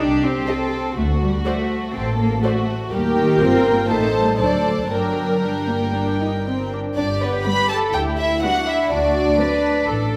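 Lively and spirited, this quick classical-period passage for string orchestra, cut from a longer piece and played with uneven, rubato beats, sets an up-front, floating first violin melody over a second violin line entering at 0.5 s, a woody, lush viola accompaniment, a pure, soft-edged cello section and a dark, distant double bass, every section bowed sul tasto in a reverberant recital hall.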